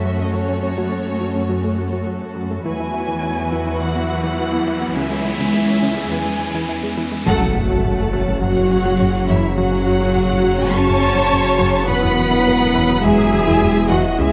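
Lush symphonic violins carry the melody above a woody, distant chamber violin line, expressive viola with portamento, a smooth cello bass and a glassy, ethereal FM pad with chorus, while a round, detuned analog pluck plays arpeggios in the background, setting a tense, futuristic mood for this hybrid orchestral and electronic film cue in F# minor at 104 BPM. An electronic riser starts at 4.3 seconds and breaks into an impact at 7.3 seconds, where very quiet, mellow French horns and clear trombones add sustained chords and a distant double bass section joins a menacing, saturated detuned saw bass that swells beneath, the whole cue set in a moderately reverberant recital hall.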